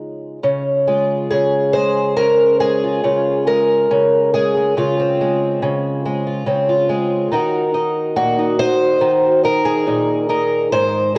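Rubato and unhurried, this brief, gentle folk excerpt features a lone fingerpicked twelve-string acoustic guitar, up front and dark with old strings, its octave-doubled shimmer and boxy, woody tone carried on a home cassette recording into a lush hall reverb as it moves from Dbmaj7 to Ebm at 7.3 seconds.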